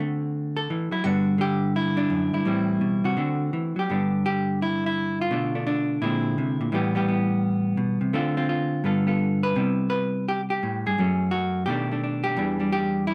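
Lightly reverberant, this 13.1-second cut from a longer solo jazz piece puts a dark, clean, picked vintage hollow-body electric guitar up front, swinging at 170 BPM in 4/4 with a loose rubato feel in G major, moving from a brief opening phrase into a longer passage at 3.9 seconds whose sophisticated harmony runs through Bm7b5, Bb9, F#madd9 and B7alt before coming to rest on Em7.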